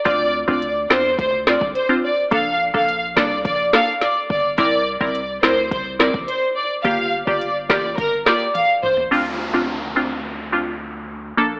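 Dancehall at 106 BPM in D minor, this sultry, hypnotic excerpt from a longer piece moves through a Dm7, Bbmaj7, C7 and Gm7 progression before landing back on Dm7. A lush studio violin section carries the melody with expressive vibrato, its bowed ensemble tone sitting up front yet distant and touched with tape echo, and it plays until 8.9 seconds. Beneath it, a bright wavetable chord stab supplies accompaniment with detuned unison voices and a decaying filter pluck, while a punchy sine sub bass adds deep sustained weight with a pitch-drop attack. An electronic afro-pop drum kit drives the groove with a deep kick, woody snare, crisp hats, rim clicks and toms, closing with a fill from 8.5 seconds. At 9.1 seconds the drums stop and a downlifter sweeps in over the stab and bass, all set in light reverb and digital ambience with an AM radio coloring.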